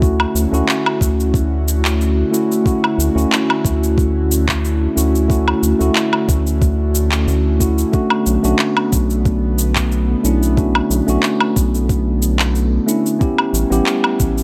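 A dry, close-sounding slice of smooth, sunny sunset chillout with a gentle swing, where a mellow tine electric piano with delay and an airy, breathy pad with chorus float over Dmaj7, Bm9 and A9 chords, a round, deep analog bass sits up front, and a soft electronic kick plays alongside tape-tinged electronic cabasa, woodblock and handclaps in a small room reverb.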